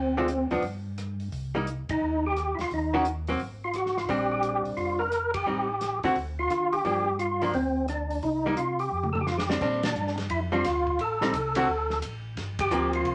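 A fat, lightly overdriven percussive tonewheel organ carries the melody up front through a fast rotary speaker in this bluesy, late-night soul jazz organ trio at 174 BPM with a swung feel, over a round, mellow second organ playing bass on a slow rotary speaker, a dark, clean, compressed archtop guitar comping from 0.2 seconds, and a small-room soul drum kit with dark cymbals whose fill at 8.9 seconds leads the move from G minor to Bb major at 9.6 seconds, all in a wet studio reverb.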